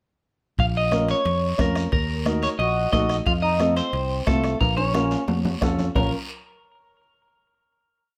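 Close, detailed and lightly reverberant, this short, driving and fiery cumbia in Bb harmonic minor at 179 BPM opens at 0.6 seconds with a bright, twangy electric guitar at the edge of break-up picking up-front hook phrases through spring reverb and tape echo over a round, punchy fingered electric bass figure, a soft-beater bombo with rim, high-tuned congas and metal-shell timbales with bell in the background and a raspy guiro, while a woody upright piano adds rhythmic triad chords from 0.9 seconds, a reedy, mellow accordion joins at 2.6 seconds with a harmony line mostly in sixths, and a drum fill from 4.6 seconds leads into a final chord at 6.0 seconds.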